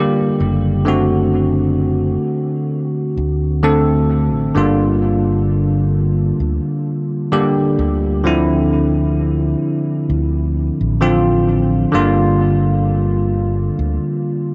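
Vaporwave with a hazy, melancholic mood, this fragment of a longer piece moves at a slow, lightly swung pace, with a bright, bell-like tine electric piano sitting up front from 0.0 seconds, colored by analog chorus and analog delay as it lays down the chords. A dark, round fretless electric bass enters at 0.4 seconds, playing low, amped notes under the keys as the harmony drifts between Gm7, D7/F# and Dm9. A huge ambient reverb with a long 9.0-second tail surrounds the recording, which carries the sound of cassette tape.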